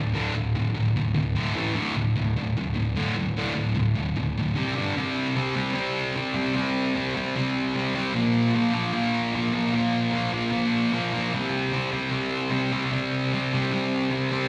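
Heard through a live club's PA with light reverb and a touch of digital ambience, this gritty, raw rock fragment, cut from a longer piece, moves at a straight 151 BPM in 4/4 as a lone thick fuzz electric guitar, bright, picked and double-tracked up front with slapback echo and analog delay, grinds through D5, A5, C5 and G5 power chords before shifting at 5.0 s to a passage built on C5 and Bb5 that runs to 14.5 s.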